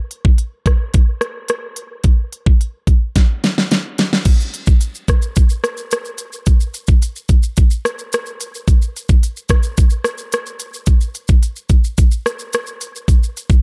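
A produced pop drum kit opens almost at once, at 0.1 s, carrying this short indie pop excerpt on its own in a steady, straight 4/4. The mood is wistful and mellow, even though the kit itself is electronic and layered, with a knocking kick, a fat snare and crisp hi-hats sitting up front. Rim clicks, a shaker and a crash cymbal round out the pattern, adding texture around the core beat. A drum fill from 3.1 to 4.3 s marks the move into a new section, which carries on until the kit stops at 13.6 s. The sound is dry and close, with very little reverb around the drums.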